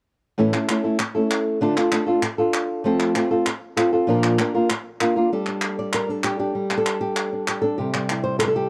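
Dramatic and passionate, this brief flamenco excerpt moves at 194 BPM in a straight 4/4, with a dark, fingerpicked acoustic flamenco guitar carrying the melody up front over crisp, vintage-toned palmas hand claps. The guitar enters at 0.4 seconds and the harmony travels from A through Dm, F and Bb before settling on Gsus2 at 5.3 seconds and reaching C near the close. The sound is dry and close, like a 1970s studio recording, with the band-limited claps also placed up front alongside the guitar.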